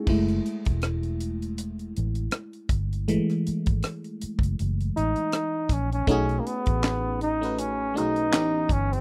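Soulful and smooth, this 80 BPM neo-soul R&B excerpt has a lightly swung 16th-note feel: a glassy, bell-like FM electric piano with chorus takes a solo over F#m9 from 0.1 seconds, backed by a dark, round, foam-muted fingered bass and a tight funk kit with a high-tuned snare, hi-hat, handclaps, rim clicks and crash. A breathy, mellow flugelhorn with light vibrato and scooped notes enters at 5.0 seconds, shortly before the harmony moves to B9 at 6.1 seconds and A9 at 8.3 seconds, all captured in a dry, close 1970s-style studio sound.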